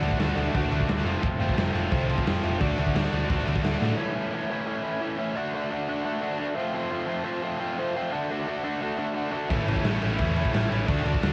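A dry, saturated home cassette recording of upbeat, rebellious punk rock: an up-front, bright, overdriven, double-tracked electric guitar riff and a tight distorted guitar tucked in the background drive along with a round, punchy hollow-body short-scale bass and a gritty, rolled-off garage drum kit with a punchy kick and crash cymbal, until a drum fill at 3.8 seconds gives way to the overdriven guitar playing alone from 4.0 seconds, and the full band crashes back in at 9.5 seconds.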